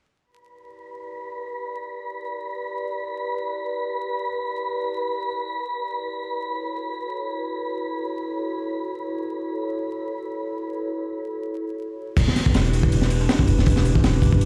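A breathy, wind-like tuned noise texture drifts in first, joined at 0.9 s by a warbling, lo-fi pad of sustained chords with chorus and 12-bit sampler grit, moving between Em7 and F#m7 in E dorian over free time while a filter sweep shapes the ambient intro. At 12.2 s this raw, nostalgic drum and bass and jungle cut drops into a crunchy, saturated breakbeat kit with punchy kick and high-tuned snare up front, a deep, mellow 808-style sine bass, and a compressed, high-passed sampler-style kit tucked in the background. The whole excerpt sits in a lush hall reverb and a bare room heard through a big sound system, roughened by vinyl crackle and lossy artefacts, with tuning set to A4 = 435 Hz.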